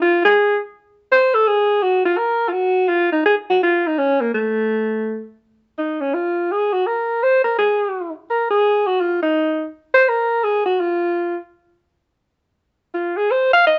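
Smoky and swinging, this short cut from a longer jazz piece in Bb minor moves at a brisk 167 BPM in swung 3/4, with a breathy, vintage-toned alto saxophone playing alone and up front, scooping into its notes from the first second and carrying a solo passage from 5.4 to 13.8 seconds, set in light reverb with a soft, rounded top end and tuned to A4 = 439 Hz.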